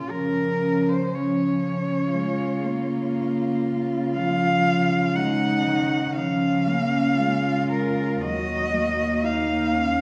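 Moving in a free, rubato 4/4 at 60 BPM, this yearning, solemn classical excerpt in Bb minor sets four bowed cellos together for its full 10 seconds, with a dark sul tasto melody with vibrato up front, a woody second line beneath it, a dark accompaniment with light vibrato, and a warm bass cello whose airy bow adds breath, all heard from further back in a wet recital hall as the harmony moves from Bbm/Db through Db to Ebm.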